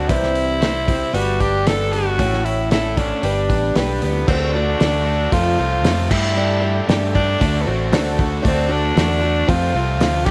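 Warm and jangly, this straight 4/4 folk rock and heartland rock excerpt at 115 BPM in D mixolydian puts a raspy, punchy tenor saxophone up front with light vibrato and analog delay on the melody, over a round, amped fingered electric bass, a lo-fi, muffled, cloth-damped thuddy drum kit with a fat snare, tight kick and dark cymbals that enters at 0.1 s, a boxy picked old ladder-braced acoustic guitar and a bright, double-tracked crunchy overdriven guitar riff sitting in the background, and a very quiet, flute-like tonewheel organ holding sustained chords through a slow rotary speaker, all in light reverb as the music shifts into a new section at 4.3 s.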